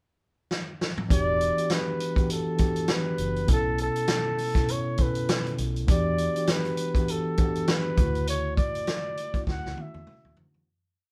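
A breathy, intimate flugelhorn with vibrato carries a motif-based melody over a lush 1970s-style soul groove at 100 BPM in E dorian, smooth and bittersweet in mood. A vintage drum kit with a punchy kick and rolled-off top opens with a fill at 0.5 seconds, and at 1.1 seconds a mellow tine electric piano enters with spread rhythmic chords, alongside a dark, round muted electric bass playing a melodic line with ghost notes and slides, as the harmony moves from Em9 through B9sus4 to Dmaj9. The band plays live in one room with light reverb, and the piece fades out from 8.3 seconds.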